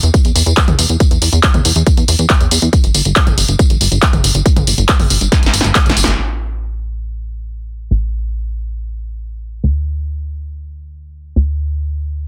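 A plucky, detuned analog bass with a filtered pluck and sidechain pumping drives this euphoric uplifting trance excerpt at 139 BPM, joined by a layered electronic kick and a punchy, tape-warm analog drum machine of claps, hi-hat, snare, tambourine and toms that rolls into a fill from 5.3 seconds and a band accent at 6.0 seconds before the bass carries on alone from 6.2 seconds, all in a dry, dense, heavily limited modern master.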